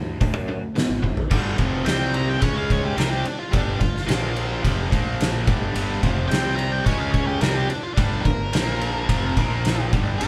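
A heavy, brooding blues rock and southern rock power-trio passage, taken from a longer piece, is anchored by an oversized, low-tuned drum kit sitting up front, its fat snare and punchy kick carrying a saturated, gritty character with a rolled-off top and the sound of a bright stone room. At 108 BPM in a straight 4/4, a cranked stack guitar, bright, overdriven and double-tracked with spring reverb, plays the riff from the start alongside a growly fingered electric bass pushed into fuzz. The drums come in at 0.2 seconds, hitting crash, hi-hat, ride, toms, kick and snare, and a drum fill at 1.0 seconds leads into a lead guitar solo that starts at 1.3 seconds and runs to the end. Around 1.9 seconds the octave-fuzz lead guitar joins, dark and distorted, ranging up to Bb5 over power-chord movement on G5, C5, C#5, Bb5 and F5, with a brief Fsus4 near the close. The whole band plays live together in one room under light reverb, giving the passage a dense, raw weight.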